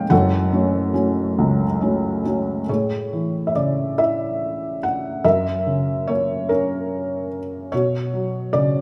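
A felt-muted upright piano plays alone in this tender, lyrical classical fragment in A major, drifting with rubato at 48 BPM in 6/8 from F#m through Amaj7 at 2.7 s to F#7 and Bsus2, its mellow, boxy tone sitting intimate and up front with audible action noise while a wet reverb opens it into the space of a church or concert hall.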